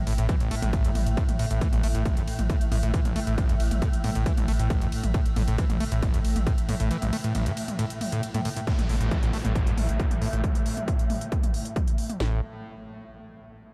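A screaming, distorted acid line drives this short cut from a longer piece of peak-time techno at 136 BPM in straight 4/4, its squelchy, resonant sawtooth tone carrying a filter sweep, chorus and a diffuse ambient delay as it pumps against the beat between A1 and A3. Underneath, a deep, round sine sub bass holds A1 with tube saturation, a low-pass filter and sidechain pumping, while a swarming drone of detuned, wave-folded unison voices spans A2 to A3, its slow-attack, granular texture bathed in built-in reverb and lush chorus. The electronic drum kit sits up front with a heavy kick and cracking snare, joined by smooth hi-hats, ride cymbal and toms, all with a tape-warm character from being re-recorded in a small room. The opening drop rests on an A5 chord and moves into a break at 6.9 seconds, and from 8.7 seconds a downlifter sweeps in the background until the harmony falls away at 12.2 seconds. 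The mood is driving and relentless, with light reverb over the whole mix.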